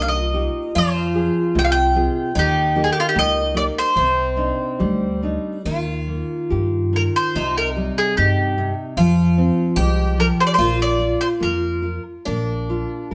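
Recorded live in a moderate stone room, this nostalgic, tender fado-style ballad moves with uneven, rubato beats as a bright, up-front mandolin carries the melody in double strings until 12.0 s, a shimmering, octave-doubled twelve-string guitar picks a boxy second line, a full-bodied nylon-string guitar fingerpicks the accompaniment, and a dark, thumpy pizzicato upright bass holds the bass line.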